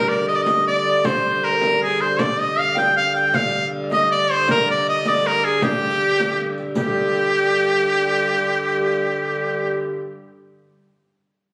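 An edgy shawm sits up front, carrying the folk-style solo melody with vibrato and a strong presence in this mysterious, ancient-sounding medieval dance in triple time, cut from a longer piece. Behind it, an airy wooden alto recorder plays a second line in the same register, with a soft attack, chiff and lifted highs, sitting in the background. A single wheel-bowed, keyed hurdy-gurdy holds a warm, smooth and even drone in the low register underneath. The riq's bright jingles, played close and dry with soft hands, and a small acoustic frame drum both sit in the background and stop at 6.9 s, just after the opening section gives way to a second one at 6.8 s. The sound has a moderate stage reverb and the roomy, club-like ambience of a phone recording made in the room.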